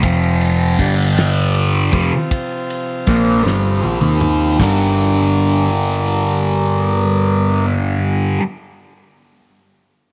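Lightly reverberant small-room sound frames this mysterious, trippy psychedelic rock excerpt in G minor at 52 BPM in 6/8, where an up-front, double-tracked fuzz guitar with phaser drives a dark, distorted riff over round, punchy picked electric bass, mellow vintage combo organ chords bathed in spring reverb, and a dry 70s drum kit with fat snare and tight kick whose fill from 3.5 s leads into a G minor chord at 4.6 s before the drums stop at 4.8 s.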